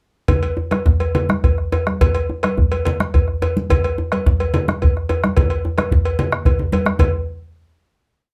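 West African traditional drumming in 12/8, this short, complete piece for drum ensemble has a powerful, driving mood and a tempo of 139-154 BPM counted in dotted quarters, speeding up from start to finish. Bombo, djembe, congas and cowbell all enter together at 0.3 seconds and play through to 7.1 seconds, with the round, close bombo and the medium-tuned djembe sitting most forward in the mix. The ringing congas, played with soft hands, and the metallic cowbell carrying a bell pattern sit a little further back, while the drums each keep an evenly spread pattern. A drum fill from 6.3 to 7.0 seconds leads into a final hit that rings out to 8.3 seconds. The sound is close and detailed, set in a wet small room with a short reverb.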